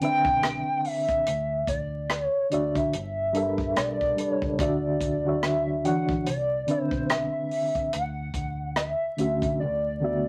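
A relaxed neo-soul R&B groove sways at 72 BPM in 4/4 with swung sixteenths, carried by a compact cocktail drum kit of hi-hat, punchy kick and rim click that closes with a fill at 9.6 s, under a deep, round fingered electric bass. A reedy electric piano with fast tremolo plays up front through its built-in speakers, moving through Cmaj9, Dmaj9 and G69 chords in D major before settling on D6. A hollow, woody square lead with chorus and vibrato sings the melody over it all, with a moderate club reverb and a layer of vinyl crackle giving this cut from a longer piece a warm glow.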